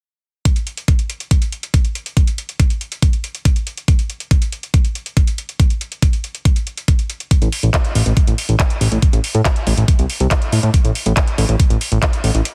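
A knocking, up-front electronic kick drives this dry, heavily compressed psychedelic trance excerpt alongside a techno kit of handclaps and metallic hi-hats re-recorded in a small room, before a fat, detuned sawtooth analog bass with a fast attack and decaying tail enters at 7.4 s to heighten the driving, psychedelic mood.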